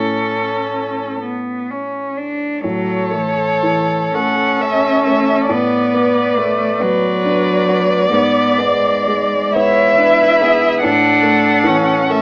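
A rich, smooth cello sits up front with a bowed, even second line full of vibrato, beneath a single violin that carries the melody with soft attacks, gliding portamento and expressive vibrato. A second violin joins at 2.6 s with its own line, while a warm, natural-sounding baby grand piano supplies the accompaniment as the harmony moves from A major through Bm7/A and E7/G# and back to A. This slow, melancholic and solemn romantic movement in 6/8 drifts with rubato at 38-49 BPM, heard through light reverb and a worn, warbling cassette-tape sound with wavering pitch and a small-speaker tone.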